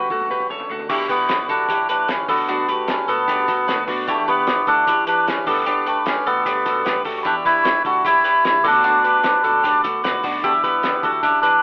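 A reedy, breathy melodica carries the melody up front in this wistful, restless jangly indie pop excerpt in E dorian at 151 BPM, over a picked twelve-string electric guitar with spring reverb, a full-bodied steel-string acoustic guitar, a round foam-muted electric bass and a muffled, cloth-damped drum kit whose fill opens the track before a mellow rubber-mallet glockenspiel and glossy chorused retro synth keys join at 0.9 seconds, all with a rough home-demo telephone sound.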